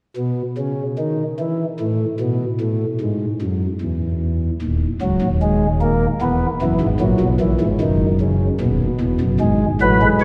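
In a straight three-beat metre, this stately, joyful fragment of a baroque-style four-part fugue features a solo pipe organ on soft flute stops entering at 0.2 seconds, its up-front, chiff-tipped voicing shimmering with tremulant as the harmony moves from F#69/C# through Eadd9 and F#7 toward B7(no3)/G#, all bathed in a long, wet church reverb.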